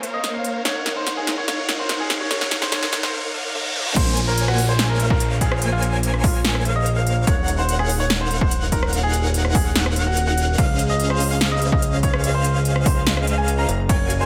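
Bittersweet and dreamy, this half-time future bass excerpt in Eb dorian at 145 BPM opens with a build-up of huge, lush supersaw chords under a sweeping low-pass filter, phaser and sidechain pumping, a bright grand piano melody with audible action noise and tape echo, a punchy overdriven big-room dance kit with crisp hats, drum fills and background risers, a reverse cymbal and a downlifter, before the drop at 4.0 s brings in a fat, nasal, saturated analog bass, an overdriven electronic kick and an airy, soft lead playing chorused arpeggios with vibrato, all over chords moving from Bbm9 through Ebm7 and Dbmaj9 to Gbmaj9 in a light reverb.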